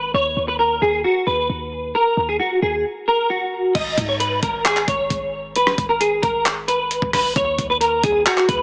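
A twangy, chorused clean electric guitar carries a brooding melody over a deep, boomy 808-style sine bass in this menacing half-time trap excerpt, moving from D#m to G#m as a gritty, compressed sampler-style kit of thumpy kick, hi-hat, handclaps, rim click and crash cymbal enters up front at 3.8 seconds, the chords dropping away at 7.4 seconds, all heard through recital hall reverb with a small speaker sound.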